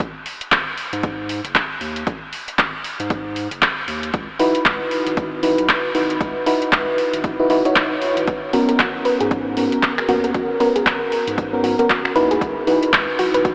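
A mellow FM electric piano, soft and up front, enters with stabs at 4.4 seconds, its noise layer colored by chorus, phaser, tremolo, cassette-tape grit and analog delay. This smooth, moody deep house cut from a longer piece moves at 116 BPM in 4/4 with a 59% swing on the sixteenths, sitting in G# minor and tuned to A4 = 439 Hz. A round analog bass with a deep, dark sine-like tone pumps under sidechain from the start, beside a punchy, tape-warm electronic kick. The deep house kit adds finger snaps, handclaps and metallic hi-hats placed forward in the mix, with studio reverb on both drum parts. At 8.5 seconds a gentle, detuned pluck joins with dark arpeggios, shaped by a moving notch, sub octave, chorus, sidechain pumping and analog delay. The chords turn from G#5 through C#m11 and G#m11 and back to C#m11, all bathed in a huge six-second ambient reverb and a dreamy AM radio sheen.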